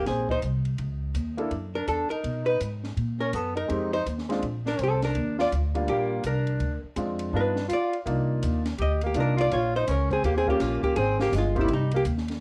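Swinging and warm, this small-group swing and bop excerpt moves at 165 BPM in 4/4 with swung eighth notes. A dark, clean hollow-body archtop guitar carries the melody up front, while a breathy, whispered tenor saxophone with vibrato and scooped notes plays a second line and a natural-sounding grand piano accompanies; these three share a cassette-tape coloring. Woody pizzicato upright bass and a compact cocktail kit with a high-tuned snare, punchy kick and rolled-off top join from the opening moments, all set in moderate studio reverb with the intimate feel of a home recording.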